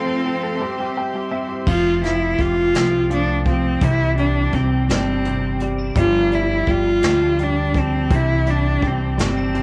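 A swaying, romantic six-eight pop ballad in F major at 56 BPM, cut from a longer piece, where a bowed, up-front cello sings the melody with vibrato over clear, intimate grand piano that plays a fill before 1.7 seconds, floating sul tasto strings that stop at that point, and a bright, twangy twelve-string electric guitar picking chorused, tape-echoed arpeggios in the background, joined by a woody pizzicato upright bass and a distant, brushed drum kit with dark cymbals that enter at 1.7 seconds, all set in light small-room reverb.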